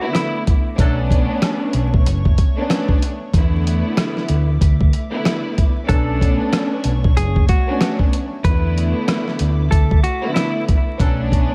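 A gritty, up-front sampler-style drum kit with a thumpy kick and compressed, tape-tinged snare drives this tough, dark boom-bap hip-hop excerpt at a swung 94 BPM in B minor, joined at 0.8 seconds by a round hollow-body fingered bass, while a woody, distant bowed string section and a moody, detuned analog pad with chorus and phaser sit beneath, a clean semi-hollow electric guitar with delay carries the melody and returns at 5.9 seconds, and punchy vintage horn stabs with delay cut in from the background over vinyl crackle.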